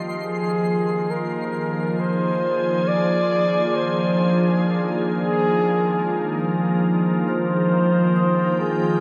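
A mellow flugelhorn carries the solo melody in this spacious, serene ambient piece, sounding distant and roomy yet up front, with a light vibrato, a classical-style phrasing and a trail of delay. Beneath it, a soft additive organ-like pad holds sustained chords with a pure, detuned, sine-based tone that is bright and up front, shaped by a slow attack, long release, ensemble chorus and its own built-in reverb. A vibraphone played with medium mallets and the motor off adds metallic, ringing arpeggios with delay, sitting in the background and fading in from 0.2 seconds onward. At a slow 68 BPM in straight 4/4 and F dorian, the harmony rests on F minor before moving to C minor at 7.3 seconds. A huge, wet ambient reverb with a nine-second decay surrounds the whole ensemble, and the passage is cut from a longer piece.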